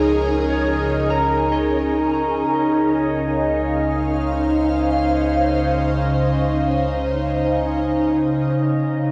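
Ambient in free time and Db major, this warm, luminous excerpt from a longer piece rests on a single Dbmaj9 chord, with an ethereal, airy pad sustaining chords up front through ensemble chorus, phaser and cassette tape colouring until 9.1 seconds, a clean, picked electric guitar arpeggiating in the background through tape echo until 6.1 seconds, and a deep, round sub bass holding Db2 until 8.5 seconds, all bathed in a wet spring reverb with the soft grain of a home cassette recording.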